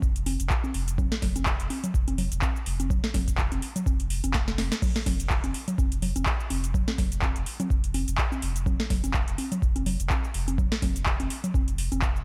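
A booming analog drum machine, an overdriven electronic kick and a round sine sub bass all start together at the outset of this gritty, raw acid house cut, taken from a longer piece. The kick is deep and analog, driven into overdrive and re-recorded in a small room, anchoring a swung groove in 4/4. Up front, the drum machine's palette of cabasa, congas, crash, handclaps, hi-hat and snare carries its own overdrive, with a crisp snare, metallic hats and a short room on the snare, clap and hats. Beneath them the mellow sub bass holds a sustained F1 with a fast attack, pumping from sidechain compression. A brief drum fill breaks in at 4.3 seconds before the pattern carries on, and the overall sound stays dry with little reverb.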